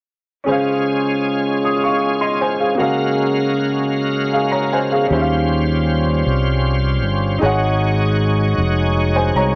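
Soulful and uplifting, this gospel excerpt moves in a gentle, unhurried 6/8 with a straight feel. A clear, woody upright piano with a slightly boxy tone plays the accompaniment from the start, joined almost at once by a full, shouting tonewheel organ holding sustained chords up front, lightly overdriven with key click, chorus vibrato and a slow rotary speaker. At 5.1 seconds a fingered electric bass enters, round, punchy and dark, sitting direct and amped at the front of the mix. The harmony travels from Dbmaj7 through Gbmaj9/Db and Eb13 to an unresolved Ab7sus4. A moderate echo chamber reverb and small room ambience give the ensemble a close, churchy glow.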